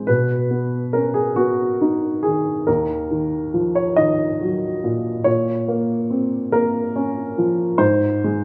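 A woody, polished upright piano plays alone and sits up front, its notes carrying a short sustain through this 8.4-second excerpt of a neoclassical minimalist piece. The playing moves in a rubato 6/8 over chords of B, Ebm, Bbm and Ab, giving a hopeful, intimate mood. A moderate recital-hall reverb surrounds the piano with the space of a church or concert hall.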